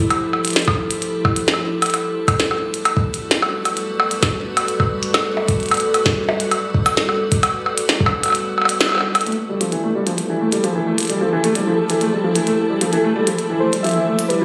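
A straight 4/4 pulse at 131 BPM drives this intricate, playful IDM excerpt in F lydian, where clicky hats, a tiny snare and percussion blips from a glitchy drum kit and a gritty, thumpy electronic kick sit up front under an icy, crystalline pad of sustained Fmaj9 and Gmaj9 chords; the kick drops out at 8.3 seconds, a felt-muted upright piano enters at 9.3 seconds with soft arpeggios and audible action noise under a filter sweep, a very quiet flickering grainy texture joins, and warbling, nostalgic lo-fi synth keys take the melody at 12.9 seconds, all bathed in a wet echo-chamber reverb with a phone-in-the-room character.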